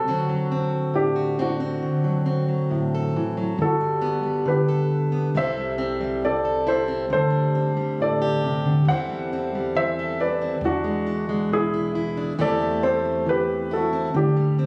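Folk at a slow 68 BPM in 4/4, heartfelt and nostalgic, tuned to A4 = 441 Hz: an up-front upright piano with a woody, short-sustained tone and tape echo carries the melody. A bright, full-bodied fingerpicked steel-string acoustic guitar with fresh strings accompanies it through chords such as D7, Gmaj9, C6, E7 and Am7/E. A thumpy, pizzicato upright bass enters at 3.6 seconds, all within a light studio reverb on a phone recording made in the room, cut from a longer piece.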